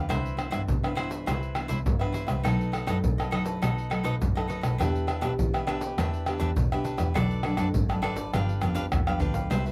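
Joyful and sunny, this short cut from a longer samba and choro piece moves in a straight 4/4 feel. A bright, crisp cavaquinho is picked above a full-bodied nylon-string guitar, whose thumb-plucked low strings and audible finger squeak give it a deep classical character. Underneath, a single bowed double bass sounds dark and woody with vibrato, set back at a distance. The percussion of egg shaker, pandeiro, tamborim and a deep surdo sits up front with hard hands and a vintage, band-limited tone, closing with a drum fill from 8.9 to 9.5 seconds. The harmony moves from Cmaj9 through B7 and Em7 to Bm7 and G7, and the close, detailed miking with little reverb keeps every part intimate and clear.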